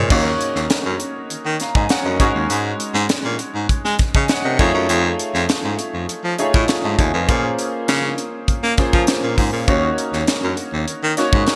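This slick, nocturnal slice of polished 1980s jazz-funk pop opens at once on a clear baby grand piano and a bright baritone saxophone, with a crisp fusion drum kit joining at 0.1 seconds. The piano comps in an open, long-sustaining voice treated with analog chorus. The baritone sax carries the bass line in a punchy pop style, colored by vibrato and scooped notes. The acoustic kit sounds airy in its studio room, with a high-tuned snare, a punchy kick, hi-hat and crash cymbal set in gated reverb. At a straight 100 BPM in 4/4 and Eb dorian, the harmony moves from Ebm7 through Ab7sus4, F7alt and Bbm9 before returning to Ebm7. All three parts sit up front in a lush hall reverb with a glossy 1980s digital sheen, and the saxophone drops out at 11.4 seconds, just before this cut from a longer piece ends.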